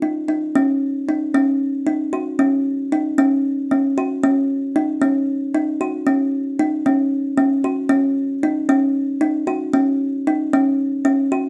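A solo kalimba carries this short, pensive contemporary instrumental fragment from 0.0 to 11.5 seconds, its brief, dark, woody thumbnail plucks ranging hypnotically between Db4 and Gb4 in a straight 7/8 metre. Close, detailed microphones put the hollow-box resonance up front, set in light reverb, and the whole piece is tuned slightly below standard pitch.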